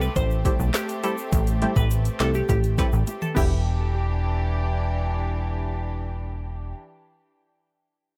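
A straight dancehall groove drives this hypnotic, tough fragment, built on an overdriven electronic afro-pop drum kit with deep kick and woody snare that rolls into a fill at 3.1 seconds, a funky analog bass up front, punchy detuned chord stabs with chorus, a crystalline wavetable pluck melody with chorus and analog delay, a reedy bowed string section pumping under sidechain, and a dry egg shaker and timbales ringing in the background through analog delay, in a dry, echo-heavy mix whose harmony moves from Am7 to Em7 at 3.4 seconds.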